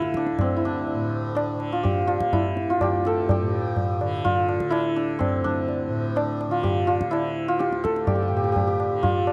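Hindustani classical music in a longing, meditative mood, this short excerpt cut from a longer piece moves in a straight five-beat cycle in raga Bhimpalasi. The mellow, shimmering santur carries the melody up front with a ringing, hammered tone, while a bright, buzzing tanpura drone sits beneath and low-tuned tabla with a short ring provides the percussion throughout. The close, dry 1970s-style studio sound has only light reverb.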